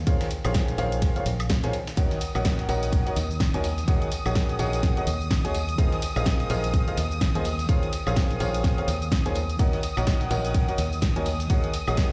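Piano house at 126 BPM in Eb dorian, soulful and bittersweet, swinging on the 16ths as a clear, worn baby grand riff sits up front with long sustain, low-pass filtering, digital delay and sidechain pumping over a warm, foam-muted fingered electric bass that pumps the same way. A punchy, layered electronic kick drives a house kit of punchy snare, bright hats, shaker and woodblock, while a gritty, compressed sampler-style kit with hi-hat, ride and snare stays very quiet beneath; at 2.0 seconds a silky, detuned sawtooth string pad joins high in chorus, along with a tambourine in the background. Chords move from Dbmaj7 through Ebm7 and Fm7, and the whole cut, taken from a longer piece, carries large studio reverb as though played on a big sound system in a bare room.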